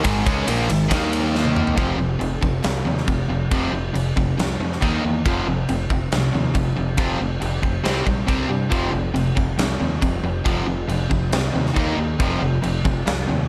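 Menacing and aggressive, this hard rock excerpt in F minor drives at 138 BPM in a straight 4/4, cut from a longer piece. From the start, two bright, picked, overdriven guitars play a riff in the background over a growling, punchy fingered bass, while a very quiet, flute-like tonewheel organ with key click and slow rotary speaker holds sustained chords only until 1.8 s, when a drum fill hands over to the main section. Up front, a big acoustic rock kit with a medium-tuned snare, punchy kick and bright cymbals rings in a stone room, with light studio reverb and some lossy compression artefacts.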